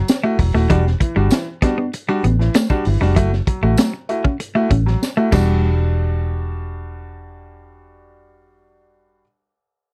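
Driving and funky, this straight 97 BPM funk cut in E minor pairs a crunchy, gritty breakbeat kit (high-tuned snare, tight kick, dark cymbals) and a round, punchy foam-muted electric bass up front with a clean, compressed picked guitar riff, brilliant, woody upright piano stabs and a jingly tambourine, all over F#m7 and Em9 chords. A drum fill at 5.0 seconds caps the opening stretch, after which the drums, guitar and tambourine soon fall away, leaving piano and bass to carry on until 9.2 seconds. The sound is dry and close, in a 1970s-style studio manner with little reverb.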